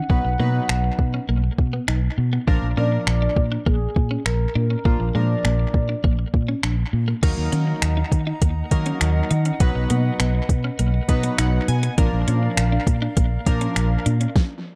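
Awash in tape echo under a light reverb, this confident, bittersweet dance-pop excerpt sets a soft, sustained horn-like synth lead over a clean, picked electric guitar riff, pumping detuned analog keys that add a fill at 10.8 seconds, a dark, foam-muted bass and an overdriven electronic kit of fat snare, metallic hats and finger snaps, with the lead giving way at 7.2 seconds to an airy, tongued flute section holding chords until the band stops at 14.4 seconds.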